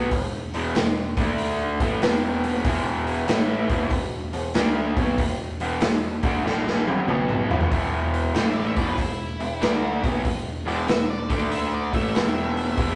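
Swung eighths at 95 BPM in 4/4 carry this heavy, smoky blues rock and southern rock power-trio excerpt, where a gritty, punchy raw garage drum kit sits up front in a bright stone room beside a double-tracked, lo-fi overdriven guitar riff moving between E5 and D5, a growly fuzz bass rumbles in the background, and after a drum fill at 6.4 seconds a dark, distorted octave-fuzz lead guitar enters at 8.4 seconds for a solo, all captured as a rough rehearsal-room recording with light reverb.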